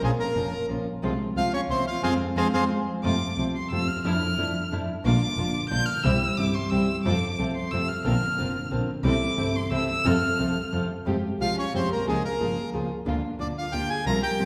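A wet recital-hall reverb fills this short cut from a longer tango, heard in a church or concert-hall space, with a tense, dramatic mood at 180 BPM in 3/4 and a rubato feel. It opens in F harmonic minor, with a reedy, dark bandoneon carrying the melody up front until 2.6 seconds, then returning at 11.4 seconds as the minor colour comes back. Beneath it, a nylon-string guitar supplies full-bodied, fingerpicked accompaniment throughout, while a clear, focused double bass plays a bowed line with vibrato. A lush, woody studio string section sits in the background with dark stabs, and the whole band punches an accent just before the music turns to F major at 3.0 seconds. From there the warm violin, heard all along as a second line, steps forward for an expressive solo with portamento and soft attacks, running until 11.1 seconds over chords moving through F, Bb and C.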